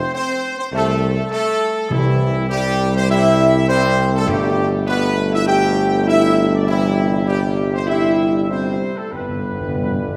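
Classical brass music, majestic and triumphant, in which a close-miked trumpet section with light vibrato carries the melody up front over mellow French horn chords and sustained, tight trombones in the background, a roomy, distant-sounding tuba anchoring the bass, and articulate hard-mallet timpani on calf heads entering at 1.9 seconds and returning for a fill at 9.1 seconds, all bathed in a wet scoring-stage reverb.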